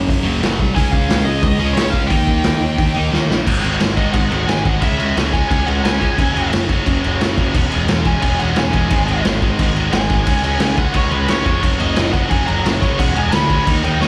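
A driving 176 BPM punk rock beat in straight 4/4 comes from a raw garage drum kit that sits up front, its boomy kick, medium-tuned snare, hi-hat and crash sounding saturated and gritty with a rolled-off top, while a dark, round fuzz bass and a bright, double-tracked distorted rhythm guitar push an aggressive riff over F#5, C# and D# chords. After a drum fill at 3.1 seconds, the biting lead guitar, overdriven with slapback echo and present from 0.8 seconds, takes a solo from 3.5 seconds to the end of this cut-off fragment, as the harmony moves through G#5, C#m and F#5. The whole thing sounds like a live gig heard through the venue's PA, with small-room club reverb adding to its raw, rough-edged energy.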